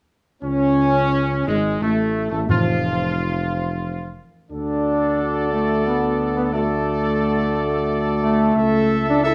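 A regal, majestic classical brass piece in 3/4 at 89 BPM opens at 0.4 s, with a bright, tight trumpet section carrying the melody over sustained chords from a clear, punchy trombone section and a mellow, smooth-topped French horn section set in the background, all with light vibrato. An up-front solo tuba anchors the bass in A major, and round, soft-mallet timpani sound from 2.5 to 3.5 s. The passage, cut from a longer piece, sits in a wet stone room.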